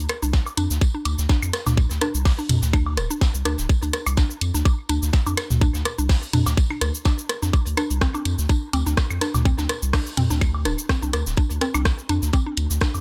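Driven by a tight, up-front electronic kick at 125 BPM in 4/4 with a 55% swing on the 16ths, this hypnotic, cool minimal techno excerpt in D minor sits on a single D7 chord with its third omitted, with a deep, saturated sine sub bass pumping under the sidechain, and a garage kit's cabasa, hi-hat and rim click layered against a booming analog drum machine's rim click, toms and woodblock, re-recorded in a small room. A distant, roomy vintage brush kit with a high-tuned snare, tambourine and filtered, pumping hats adds a soft, rolled-off layer, while a woody, round FM mallet-like pluck repeats a short riff between C4 and D4, thickened by chorus, a sub octave and dub echo. The overall mix is dry, with little reverb, and the groove runs steadily for 13 seconds as a cut from a longer piece.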